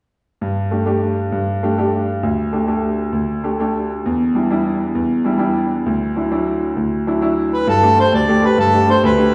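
Rollicking and lively, this excerpt of a Celtic slide in 12/8 at 132 BPM in G major opens at 0.4 s with a brilliant, vintage-sounding grand piano laying down an up-front accompaniment with long sustain through Gsus2, Dsus4, Em7 and Dadd9 chords, before a reedy, airy accordion steps forward with the melody at 7.5 s, all set in the wet reverb of a recital hall with a softened top end.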